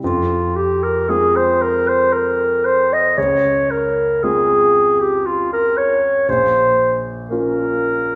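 Romantic classical music for clarinet and grand piano, this melancholic, elegiac fragment moves at a slow 58 BPM in 3/4 with a rubato feel, in F minor, passing from Fm through Dbmaj7 to Bbm. A dark, distant clarinet sings the solo melody up front, while the grand piano supplies a warm, intimate accompaniment in its lower range, its natural tone carrying long sustain and audible action noise. Both parts play throughout the 8.2 seconds, bathed in the lingering reverb of a recital hall, church or concert space.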